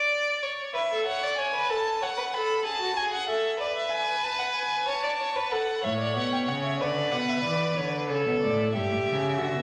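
A focused, clear violin carries the melody from 0.7 seconds, its bowed vibrato line sounding distant yet up front in this joyful, elegant baroque-style fugue for string quartet. A second violin opens the passage alone at 0.0 seconds, playing a smooth, even second line with a close, intimate presence. At 5.8 seconds a rich cello enters on the bass, its bowed vibrato tone adding depth from a distance. The music moves at a steady 94 BPM in a straight 4/4, tuned to A4 = 442 Hz, with harmony passing through chords such as F#madd11, E/G# and Bmadd11 before arriving on A7. A wet scoring-stage reverb with a 1.8-second decay surrounds the playing, giving this short section cut from a longer piece a spacious, polished sound.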